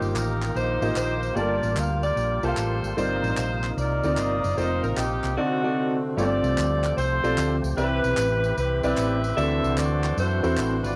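Reverent and hopeful, this short excerpt of uptempo gospel swings in four, carried by a tight jazz-style saxophone section that sits up front with light vibrato and a clear yet distant, roomy tone. Beneath it, a baby grand piano plays open-sounding accompaniment, while a percussive tonewheel organ holds sustained chords in the background, its full, lightly overdriven sound colored by key click, second-harmonic percussion and a fast rotary speaker. A hollow-body short-scale electric bass, played with the fingers, is dark, round and punchy, amped and placed up front. Tambourine and group handclaps add an acoustic small-room snap at a lower level. The phrase is stated twice, the second pass beginning at 6.2 seconds, over rich extended chords such as F9sus4, Gm9 and Cmaj7. The whole has the light reverb and small-room ambience of a home recording on cassette.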